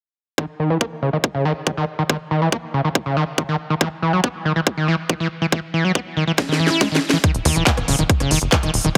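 Psychedelic trance at 140 BPM in Eb phrygian, driving and intense, where a squelchy, screaming distorted acid line with chorus, tape echo and sidechain pumping sweeps its filter over an overdriven electronic kick from the opening, a techno kit with cracking snare, smooth hats, handclaps and rim click arrives with a drum fill at 6.4 seconds, and a tight, nasal sequencer bass joins at 7.3 seconds, all within a heavily compressed radio sound and light reverb on this fragment of a longer piece.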